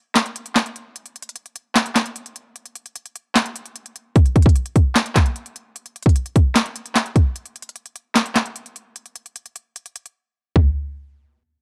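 Dry, gritty and cassette-worn, this eerie, dark hip hop fragment, cut from a longer piece, moves at 150 BPM in a half-time 4/4 feel as an up-front electronic trap kit enters at 0.2 seconds with a hard-clipped kick, sharp snare, crisp hi-hats, handclaps and toms, before the drums drop out briefly between 10.2 and 10.6 seconds.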